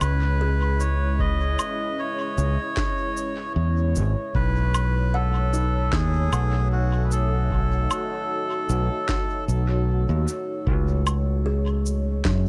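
A round, up-front fingered electric bass anchors this hazy, spacious ambient dub excerpt at 76 BPM in C# minor, with a reedy, breathy melodica carrying the melody through dub echo until 9.4 seconds over a dark, detuned sawtooth pad with chorus and reverb, while an airy kalimba plays echoing arpeggios in the background from 0.4 seconds, a deep analog electronic kick joins at 1.2 seconds, and a tape-colored electronic cabasa, woodblock and woody snare, also treated with dub echo, sit in an echo-heavy digital ambience as the chords move from C#m7 to B9 and back.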